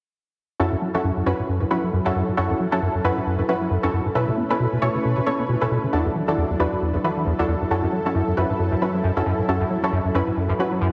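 A rubbery, square-wave acid bass sits up front in this swaggering, gritty breakbeat excerpt, its resonant, saturated tone running a dark riff from 0.6 seconds while a filter sweep moves across it, with lush chorus and delay on its filter-plucked, fast-attack, decaying notes. Beside it, an orchestra-hit-like synth stab fires bold, punchy, nasal stabs built from layered, detuned sawtooth voices with a noise layer, bright and up front, carrying its own built-in reverb and delay until 10.7 seconds. Underneath, a thick, warbling pad of vintage detuned sawtooths swells in slowly and holds sustained chords with a long release and chorus. The groove moves at 135 BPM in 4/4 with a 58% swing on the 16ths, in F# minor, cycling from F#m7 through B9sus4 and E9sus4 back to F#m7. A moderate plate reverb and a heavily compressed, radio-like sound give the whole cut a squashed, hazy edge as it runs to 10.9 seconds.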